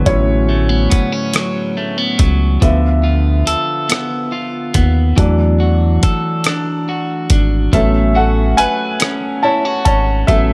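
Slow six-eight R&B at 47 BPM in A major, sensual and intimate: a concert grand piano with audible action noise takes the solo throughout over A69, Dm6 and E9sus4 chords, joined by a slightly broken-up picked electric guitar as a second line, a round analog bass with deep, dark sustain, and a dusty, gritty sampler-style kit of thumpy kick, hi-hat and rim click entering at 0.1 seconds, all set in light digital reverb in this short cut from a longer piece.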